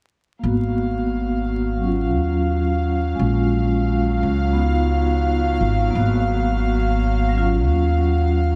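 An up-front upright bass anchors this brooding, cinematic trip hop passage, its pizzicato notes woody and thumpy, with steel strings and a touch of tube saturation. It moves at 87 BPM in 4/4 with a light 16th-note swing, in G# dorian, and the chords run G#m7, D#m7, A#m7, C#7, then back through G#m7 and D#m7. Above it, a vibraphone struck with medium mallets and played with its motor off rings with a metallic shimmer, colored by tremolo, tape echo and a low-pass filter that sweeps across its sound. A dark chamber string section holds sustained bowed chords, its period-style gut-string tone nasal and reedy with a smooth top, roughened by vintage 12-bit sampler grit and softened by its own low-pass filter. All three parts play together from 0.4 to 8.6 seconds in this clip cut from a longer piece, set in a small room with light reverb under a bed of vinyl crackle.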